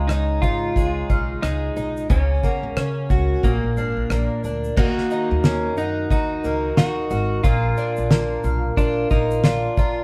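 Recorded live in one room with moderate studio reverb, this reflective, wistful acoustic pop piece sets a cloth-damped, thuddy drum kit with a fat snare and dark cymbals up front beside a boxy, shimmering fingerpicked twelve-string acoustic guitar with audible finger squeak, while a woody pizzicato upright bass, a mellow, round mandolin playing arpeggios, and a clean, compressed direct-recorded electric guitar carrying a second line with a warbly pitch drift fill out the swung groove.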